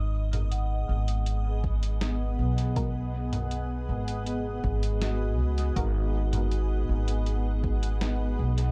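Deep and spacious, this ambient dub excerpt at 80 BPM in G# minor rests on a single G#m7 chord, with a woody, thumpy pizzicato upright bass up front beneath a blurred, detuned granular cloud pad, soft-mallet vibraphone arpeggios ringing through dub echo from 0.5 seconds, a muffled, pitched-down sampler-style kit of hi-hat, snare and toms, an overdriven electronic kick in the background from 1.6 to 7.8 seconds, and a nasal, phased sawtooth chord stab appearing between 2.8 and 5.9 seconds, all in a dark, dry production.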